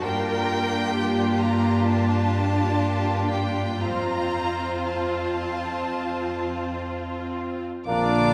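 Classical and serene, this rubato passage at 57-68 BPM in 4/4 sets bowed strings in a concert-hall wash, with a rich, vibrato violin section carrying the melody over a smooth second violin line, a clear, intense viola section, a lush cello section in the background and an up-front double bass section, all moving from Gm7 to F, before flute, cor anglais, bassoon, dark French horns and trombones, a punchy bright trumpet and a tuba enter together at 7.9 seconds, just as the excerpt ends.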